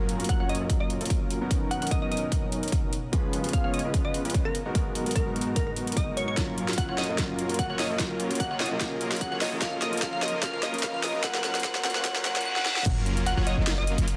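Playful and euphoric, this future bass excerpt runs at 148 BPM in a half-time feel in F# major, building for 12.9 seconds over a lush cycle of major seventh, ninth and minor ninth chords as a fat, detuned sawtooth polysynth riff with cassette-tape color and a glassy wavetable pluck melody with chorus and tape echo pump against the sidechain, while a dark, mellow baby grand piano sits in the background and a breathy, very quiet pad sustains chords underneath. Up front, a punchy layered electronic kick and a trap kit with a sharp snare, metallic hats and crash cymbal drive the build-up through a filter sweep, drum fills, a faint riser and a reverse cymbal. At 12.9 seconds the drop lands with an impact and a deep, boomy 808-style bass on F#1, all under a dense, heavily limited modern master.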